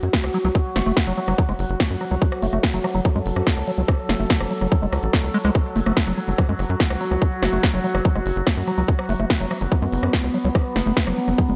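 An overtone-sweeping drone of sawtooth and sine tones with chorus and built-in reverb opens this alien, intense psychedelic trance excerpt in F# minor at 144 BPM, joined at once by a tight, punchy sawtooth sequencer bass and a big-room dance kit of crisp hats, rim click and punchy snare, with an up-front tight electronic kick arriving at 0.1 seconds and a squelchy, resonant liquid acid bass riff entering at 0.3 seconds under a filter sweep, phaser, sidechain pumping and dub echo.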